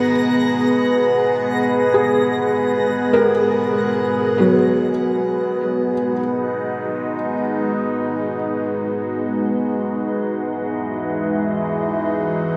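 An evolving wavetable pad sits up front in this serene, reflective ambient excerpt in free time and G# minor, its detuned, morphing sustained chords carrying a sub octave, a phaser and built-in reverb from the first moment to the last. Beneath it, a felt-muted upright piano plays soft, intimate arpeggios through a delay until 6.2 seconds. High above, a twinkling granular texture adds a sparkling octave-up shimmer and fades out, ending at 4.9 seconds. From 6.6 seconds a calm, organ-like drone enters, its detuned unison thickened by ensemble chorus and built-in reverb. The harmony rests on G#m7 before moving to Esus2 at 9.7 seconds, all bathed in a huge, wet ambient reverb.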